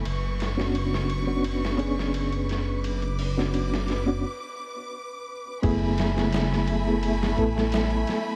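Trip hop with a dark, hypnotic mood, cut from a longer piece and set over a bed of vinyl crackle and light reverb. A reedy, worn electric piano with overdrive, fast tremolo, gritty sampler crunch and tape echo carries the chords from Bmadd9/F# to F#m11 at 5.6 s. Alongside it sit a deep, rumbling detuned saw bass up front, a lush bowed violin section holding smooth sustained chords, and a compressed, muffled, pitched-down sampler drum kit with a thumpy kick, filtered cymbals and a small-room character, with a break at 4.2 s.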